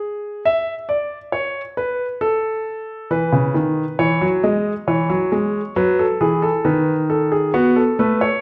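Close and intimate, this recording places a concert grand piano up front within a moderate recital hall reverb, and the clatter of the instrument's action is plainly audible beneath the notes. It is a short fragment of a baroque-style two-part invention in classical style, cut from a longer piece and lasting 8.4 seconds. The mood is lively and elegant, in a straight, even 4/4. The solo piano ranges from C#3 up to E5, with a deep bass and a smooth, vintage character. The opening bars carry the lines on their own before the harmony settles onto E at 3.1 seconds and moves to B7/D# at 6.7 seconds.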